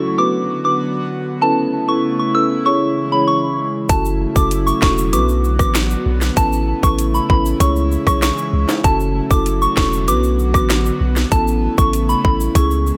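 Bouncy and sultry, this dancehall excerpt at 97 BPM opens with woody marimba, an airy, breathy pad pumping under sidechain and chorus, and a soft, pure synth bell melody trailing tape echo over chords moving through Bm, Aadd9, C#m and F#m7, before a tight, up-front island pop drum kit with sharp snare, metallic hats, finger snaps and rim clicks, a deep sine sub bass with a pitch-drop attack, and faint ringing egg shaker and timbales arrive at 3.9 seconds, all in light reverb.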